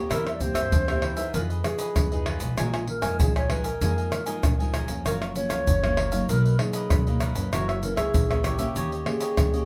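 This bittersweet, lively samba-choro fragment, cut from a longer piece, opens with a bright, crisp picked cavaquinho and a fingerpicked classical nylon-string guitar with fresh strings. A woody pizzicato upright bass strung with steel anchors the low end at a straight 97 BPM in 4/4. At 0.1 seconds a breathy alto flute takes the melody, its tongued, expressive phrasing coloured by vibrato and a warm tone. At the same moment an up-front kit of egg shaker, tight surdo, pandeiro and tamborim joins, struck with hard hands and sounding as if in a small room. The harmony drifts through bittersweet turns such as Fm7b5, Gbmaj7 and Bmaj7 before settling on Eb7. The whole band plays live together in one room, wrapped in a wet studio ambience.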